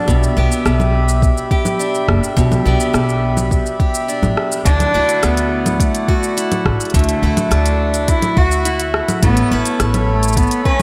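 Autumnal and intimate, this folktronica excerpt moves at 105 BPM in a straight 4/4, with a dreamy mix soaked in a church-like reverb. A reedy, breathing harmonium holds sustained chords while a bright parlour-style steel-string acoustic guitar picks arpeggios through an analog delay, with audible finger squeak. Underneath, a woody pizzicato upright bass sits up front with tube saturation, joined by a soft electronic kick and an organic electronic kit of congas, crisp hi-hat, rim click and shaker. At 4.7 seconds a bowed cello enters with a nasal, gut-string, period-style tone, carrying the melody through its own analog delay. The harmony moves from G6 to Dadd9 at 4.7 seconds and on to Aadd9 at 9.2 seconds, and the fragment ends at 10.8 seconds.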